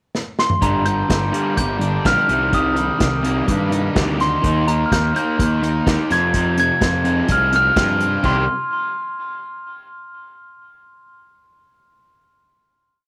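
A glockenspiel struck with soft plastic mallets rings out a mellow, bell-like hook with tape echo over this moody, restless indie rock piece in C minor at 126 BPM, where an up-front acoustic kit with dark cymbals kicks off with a fill at 0.1 seconds before a crunchy palm-muted guitar riff, a background overdriven guitar picking arpeggios and a fuzz bass locked to the kick drive the Gm, Cm7, Eb, Fm progression to a final Cm chord at 8.2 seconds.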